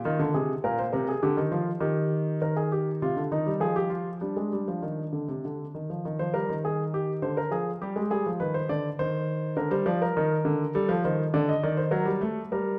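In a straight, stately yet lively 3/4, this baroque-style classical two-part invention for solo grand piano, cut from a longer piece, sets an intimate, up-front piano with audible action noise and long sustain inside a wet recital hall reverb as its harmony moves through chords such as Fm7, Cm/Eb, Dm7b5 and D7.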